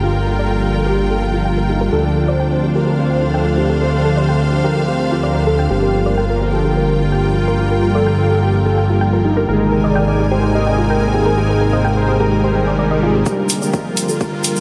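A fat, detuned analog bass sits up front in this dramatic, melancholic melodic techno excerpt at 127 BPM in G minor, pumping under a thick, wave-folded unison lead, a bright, resonant pad, a gentle pluck arpeggio, mellow vintage synth brass stabs and a lush bowed string section, all drenched in a dreamy, cavernous reverb. The lead, pad and arpeggio carry filter sweeps over a Gm7, Dm7 and Abadd9 progression, and a very quiet riser enters at 12.5 s. The bass drops out at 13.2 s, and at 13.3 s an overdriven deep kick and a grainy shaker arrive for a short build-up, joined by a hi-hat at 13.5 s.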